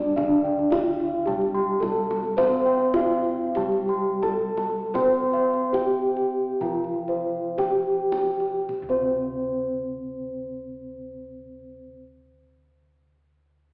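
This excerpt of Javanese gamelan is ceremonial and serene, moving in a straight 4/4 at a tempo that ranges from 51 to 109 BPM and slows between 2.4 and 8.7 seconds. A bronze metallophone carries the melody up front, its ringing tone struck with padded disc mallets and given an airy shimmer by the beating of its paired tuning. Beneath it, a second, soft and mellow metallophone plays the accompaniment, while a third, struck with a wooden mallet, spins arpeggios high above. Bossed gongs supply a round, beating bass and also double the high arpeggios, their sound boxy and warm, while the kendang adds tight, hard-handed strokes until 9.2 seconds. The whole ensemble sits in a wet, reverberant scoring stage heard from further back, filtered through an AM-radio colour, and the passage shifts into a new section at 8.7 seconds.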